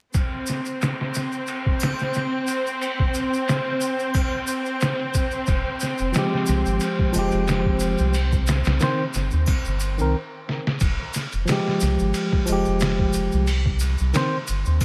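A dark, hypnotic trip hop excerpt opens on a rich, smooth studio string section holding sustained chords with light vibrato, set over a muffled, pitched-down sampler-style drum kit with a thumpy kick, medium-tuned snare and hi-hat and ride, overdriven and compressed as if re-recorded in a small room. A quiet tube shaker and triangle add an acoustic shimmer alongside the swung beat, while a very quiet, breathy wind-like noise texture drifts in behind the strings. At 5.5 seconds a deep, round analog bass enters up front, its wave-folded tone dark and sustained beneath an F minor add nine chord moving to C minor. A clean tine electric piano follows at 6.1 seconds, colored by harmonic tremolo and tape echo. The strings and the airy texture fall away as the band stops at 10.1 seconds, a short drum fill brings the groove back, and the bass, drums and piano carry the same two chords on under a light reverb and a layer of vinyl crackle.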